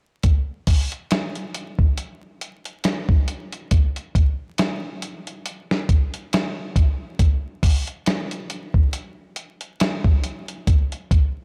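Trip hop in a melancholic, hypnotic mood, this short section taken from a longer piece rests entirely on a dusty soul sampler-style drum kit in 4/4 with a lazy swing on the sixteenths. The drums come in at 0.2 seconds and run until 11.3 seconds. The kit pairs a thumpy kick and a medium-tuned snare with hi-hat, all compressed and kept at natural pitch. Its sound is gritty and tape-warm, re-recorded in a large room, yet it sits up front in the mix. Light reverb, vinyl crackle and a dark production color give the whole passage a worn, late-night haze.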